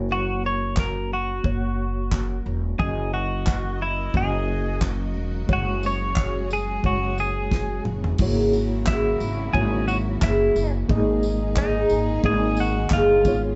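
This reflective, tender acoustic pop fragment opens on a reedy electric piano with fast tremolo, a shimmering, octave-doubled twelve-string acoustic guitar in the background and a woody pizzicato upright bass, while a bright, twangy twelve-string electric guitar with plate reverb carries the melody up front. A punchy studio drum kit with handclaps, tambourine, toms and crash cymbal arrives at 0.8 seconds over a lightly swung groove, lush bowed strings join softly behind at 2.8 seconds, and a drum fill at 7.5 seconds leads into a new section. The mix sits in a moderate room, heard from a little further back with a rounded, dark top end.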